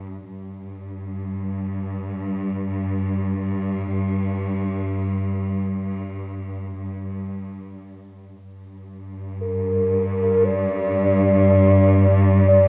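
A lush, bowed cello section holds a low G2 up front in a small room, fading out over the first 8.4 seconds of this reflective, spacious ambient fragment in free time. At 9.4 seconds a velvety, dark synth lead enters with a sustained melody between Bb4 and D5, its sawtooth and triangle tones colored by chorus, vibrato, cassette tape and tape echo. The whole fragment carries the character of a home cassette recording.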